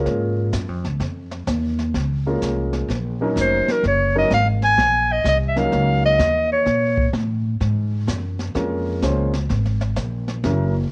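Smoky and moody, this short cut from a longer small-group jazz piece sits in a swing-and-bop groove, with the chords moving from Bbm7 to Ebm7 and back. An upright piano with a woody, up-front tone carries the accompaniment, colored by a cassette-tape grain, while a pizzicato upright bass with steel strings and a growly, up-front sound anchors the low end. A jazz kit played with brushes sits further back, its high-tuned snare, hi-hat and boomy kick also bearing that tape character. At 3.4 seconds a breathy clarinet steps forward as the solo voice, clear and present with light vibrato and a soft subtone, bathed in plate reverb until it drops out at 7.1 seconds. The whole has the intimate, lightly reverberant feel of a home recording made on cassette.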